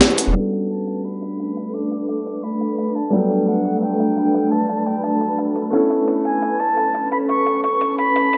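A gritty, compressed breakbeat kit of hi-hat, shaker and medium-tuned snare, its filtered sound re-recorded in a large room, drives this uplifting, lush liquid drum and bass at 173 BPM with a light 16th-note swing, while a clear, long-sustaining grand piano and a glassy, ethereal FM pad with ensemble chorus both move through filter sweeps over Gmaj9 shifting to Aadd9 at 5.7 seconds, and a bright, reedy concert flute with vibrato carries the melody from 0.7 seconds, all set in a lush hall reverb.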